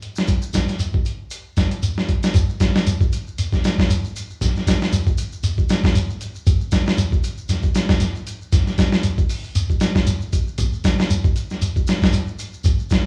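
Bathed in a wet, large studio reverb that captures a band playing live in one room, this driving, hypnotic afrobeat excerpt pairs an up-front, gritty sampler-style drum kit, with its thumpy kick, medium-tuned snare and hi-hat, against a grainy, mellow shekere, both running together through the full 13 seconds over a gentle sixteenth-note swing.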